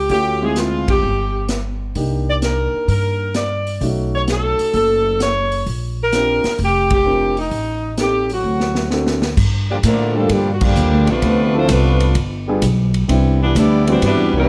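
A swung 4/4 groove from a swinging big-band drum kit with dark cymbals and a punchy kick drives this brassy, energetic big band jazz excerpt, where a tight, up-front saxophone section carries the vibrato-laden melody over a woody, growly pizzicato upright bass and a concert grand piano with deep bass and long sustain, while a mellow trombone section slips in behind at 8.3 s with a second line, just as a drum fill leads into the next section under light reverb.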